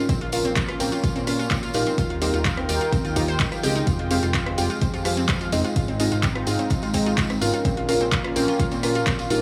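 Bittersweet and emotional, this progressive house excerpt moves at 127 BPM in straight 4/4, cycling through Bbm, Ebadd9, Fmadd9 and Ab before returning to Bbm. A smooth, detuned pad sits in the background with chorus, while a round, warbling analog pluck plays arpeggios through dub echo and a deep, dark chord stab with a sub octave sounds out soft stabs, all three breathing with sidechain pumping. Beneath them a fat, nasal sawtooth bass with tube saturation, a punchy layered kick, a house kit of handclaps, hi-hat and rim click, and a jingly tambourine drive the groove in light small-room reverb.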